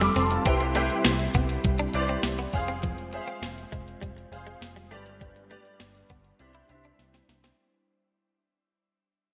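A straight 4/4 groove from an up-front, sampler-style drum machine, with a thumpy kick, overdriven snare and tambourine wrapped in gated reverb, drives this romantic, uplifting 1980s-style pop fragment, which fades out throughout and ends on a drum fill at 7.0 seconds. A clear, polished baby grand piano carries the accompaniment through Cmaj7, Fm, G and Cadd9 with ensemble chorus and shimmer reverb, while a round, foam-muted electric bass holds down the low end. Behind them a bright, compressed clean guitar picks a riff through subtle chorus and delay, and an ethereal glass harmonica sustains smooth chords, all set in a lush hall with bright digital production.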